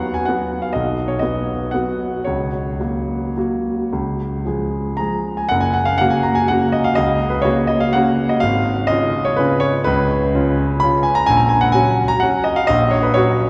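A smooth, vintage-toned grand piano sits up front in this playful, graceful classical waltz, playing alone in 3/4 with a supple rubato feel, its phrase heard twice across a 13.5-second passage cut from a longer piece and bathed in a wet cathedral reverb that places the listener further back in a vast, ringing space.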